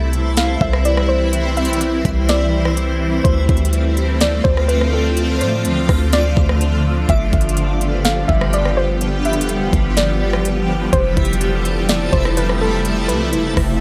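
A shimmering ambient pad with phaser and sidechain pumping, a deep, boomy 808-style bass and a reversed, granular backwards texture open this floating, dreamy half-time cloud-rap excerpt over Cmaj7, Dm7, G7 and Fmaj9 chords, joined at once by an overdriven trap kit with a knocking kick, sharp snare and crisp hats, and at 0.4 seconds by a soft, round pluck carrying chorus and analog delay, all in a dry, gritty hardware sound.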